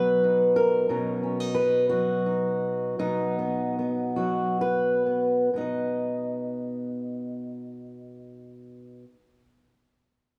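Gentle and warm, this short folk excerpt features a single fingerpicked steel-string acoustic guitar playing alone in a loose, rubato 6/8 feel. The guitar has a dark, auditorium-style body and sits up front in the mix, its range reaching from B2 up to D#5. The harmony rests on a B chord, moves to Badd9 at 0.9 seconds, and returns to B at 3.0 seconds. Between 0.9 and 5.5 seconds the pace gradually slows, giving the phrases an unhurried quality. A light studio reverb adds a touch of space around the instrument, and the guitar falls silent at 9.1 seconds.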